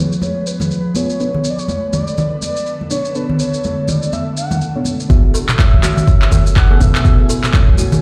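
An expressive, smooth sawtooth synth lead with vibrato and tape echo floats over an ethereal, airy pad and a dark, detuned chord stab, both pumping under sidechain and colored by phaser, while an overdriven afro-pop kit of handclaps, shaker and toms and ringing, high-tuned congas played with soft hands set a hypnotic, spiritual afro house groove. At 5.1 seconds the drop lands: an up-front, overdriven electronic kick, a deep, boomy 808-style bass and a woody, plucked kalimba arpeggio with tape echo join as the harmony settles from C#7 and Bm9 onto F#m11. The swung excerpt sits in a large studio reverb, sounding as if played on a big sound system in a bare room.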